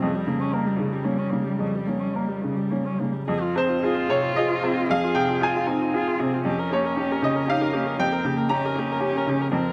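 Closely miked with light reverb, this short cut from a longer neoclassical piece for piano and strings moves in a reflective, melancholic rubato 3/4 at roughly 106-120 BPM, where a bright, woody upright piano sits up front as accompaniment, a veiled, muted viola played con sordino with vibrato and a soft attack fills in beneath it, and a dark, muted cello carries a smooth second line, all three playing throughout as the harmony drifts from Gdim/F to Fm at 3.3 seconds and back to Gdim/F at 6.4 seconds.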